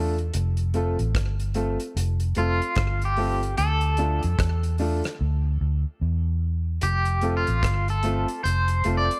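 Warm and laid-back, this short cut from a longer roots reggae piece rides a swung sixteenth-note lilt in 4/4 over an F to Dm and back to F progression. An up-front, twangy electric guitar, slightly broken-up and picked, carries a solo through the whole passage with tremolo and tape echo. A clear, woody upright piano adds stabs, and a dark, round, foam-muted fingered bass sits forward. A dry, damped 70s kit with a tight kick, hi-hat and rim click, touched with slapback echo, drops out between 5.2 and 6.8 seconds, all inside a studio reverb.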